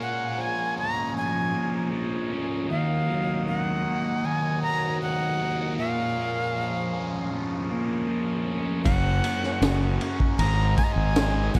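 An echo-heavy, small-room mix opens this trippy, hypnotic psychedelic rock excerpt at 78 BPM, where a breathy, reedy jazz flute with vibrato carries the melody through dub echo over buzzy vintage combo organ chords and a thick, double-tracked fuzz guitar riff drenched in phaser and echo, moving through Bbm7, Ebmadd9 and Gbadd9 before a round, overdriven fingered bass, a punchy, gritty breakbeat kit with a high-tuned snare and dark cymbals, and a faint, jingly tambourine all arrive at 8.9 seconds.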